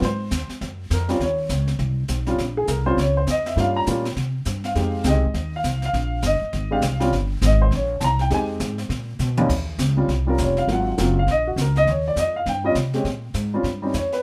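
A brisk swung 4/4 groove carries this playful, relaxed jazz piano trio, cut from a longer piece, as the up-front, woody upright piano solos throughout over a growly, thumpy pizzicato upright bass and an airy brushed drum kit with dark cymbals, a high-tuned snare and a boomy kick, the kit adding a fill at 9.2 seconds, in a lightly reverberant studio room.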